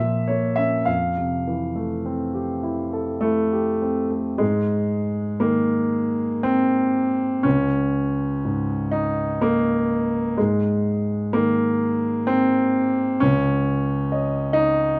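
A B-flat minor chord on a solo concert grand piano opens this dreamy, luminous impressionist classical fragment in a rubato 3/4 at 48-69 BPM, passing through Fmaj9 before shifting to A-flat major at 4.4 s, where Abadd9, Db5 and Dbsus2 harmonies sound with a deep, open bass, the piano up front and detailed through close microphones in light reverb.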